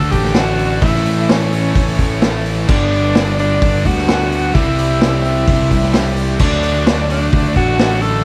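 A straight 4/4 groove from an up-front vintage kit, with dark cymbals, a tight kick and a medium-tuned snare, drives this swaggering classic rock excerpt, alongside a fuzzy, overdriven picked bass also sitting up front. Three bright, picked electric guitars grind out riffs in the background: one cranked through an overdriven stack, one tight and distorted, and a very quiet double-tracked one. Over the D, A, G, C changes, a faint biting lead guitar adds a second line above a fat tonewheel organ holding sustained chords through a slow rotary speaker, while a raspy, gritty tenor saxophone carries the forceful solo melody with light vibrato in a small room ambience.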